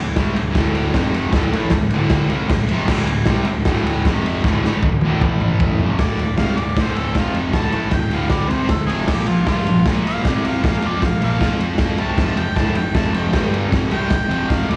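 Garage rock in D minor at 155 BPM, gritty and menacing, opens on a double-tracked fuzz guitar riff up front, a fuzzed, overdriven picked bass in the background and a raw drum kit with a punchy kick and saturated, rolled-off top that comes in at 0.2 seconds and rolls through a fill from 4.4 seconds. At 6.0 seconds a clear harmonica takes a solo with light vibrato and scooped notes, its overdrive dressed in plate reverb, slapback echo and analog delay. The power-chord movement through D, F, Bb, C and G sits in club reverb, heard as a live gig through the venue's PA in this cut from a longer piece.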